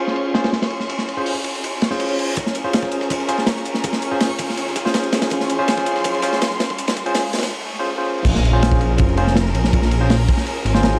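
Atmospheric and nostalgic, this 163 BPM drum and bass excerpt in Bb minor sets lush, distant strings and barky electric piano stabs, roughened by 12-bit sampler grit and dub echo, over a faint twinkling granular shimmer and a crunchy, up-front breakbeat kit with dark cymbals. A reverse cymbal sweeps in at 1.9 s, and at 2.4 s a dusty, tape-warm soul kit joins in the background as a riser builds toward an impact, until a menacing, thick detuned saw bass drops in at 8.2 s under a light veil of vinyl crackle.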